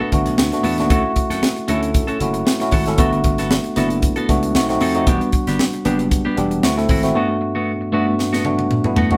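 A moderate studio reverb frames this slick, bittersweet slice of polished 1980s jazz-funk pop at 115 BPM with a light sixteenth-note swing, where a worn, slightly out-of-tune tine electric piano sits up front, voicing chords from Gmaj9 through B7b9 and Em7 to D9, a twangy, compressed clean electric guitar picks a bright riff, a growly, punchy slap bass drives the low end until 7.1 seconds, and a tight, airy funk drum kit with a high-tuned snare closes on a fill at 8.2 seconds.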